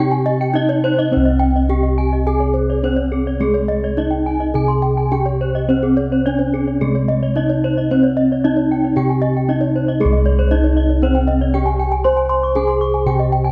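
This Balinese gamelan excerpt in C pelog moves in a straight 4/4 at 105 to 118 BPM, with a brilliant, shimmering mood. A bronze metallophone carries the melody from Ab3 to C5, its paired tuning producing beating tones that hover around each ringing note. Above it, two more bronze metallophones spin arpeggios in a higher register, one reaching up to Db6+35c; one is struck with a horn mallet and sits in a boxy small room, while the other, played with a wooden mallet, is mid-forward in the mix. Underneath, bossed gongs hit with padded beaters supply a round, mellow bass that sits up front, spanning C2 to C5. Light reverb adds a touch of space to the metallic shimmer, and after a first section the music shifts to a new passage at 10.0 seconds.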